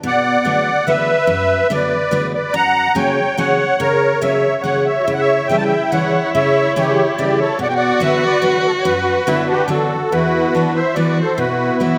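Nostalgic and whirling, this musette waltz in B minor moves at 143 BPM in 3/4 with a lightly swung eighth-note feel, in a passage cut from a longer piece. A picked steel-string acoustic guitar, bright and full-bodied, sits up front as accompaniment from the start, laying out changes that begin on Bm7 and pass through F#, C#dim and Bm before shifting to Esus2 near the close. The musette accordion carries the melody almost from the first moment, its reedy, shimmering tone also placed up front and standing as the loudest voice. At 5.0 seconds a single bowed violin joins with a second line, dark and expressive, its soft attack, vibrato and portamento giving a smooth quality alongside the accordion. A moderate concert hall reverb surrounds the trio, lending the sound a sense of space as the music turns toward a new section at 10.1 seconds.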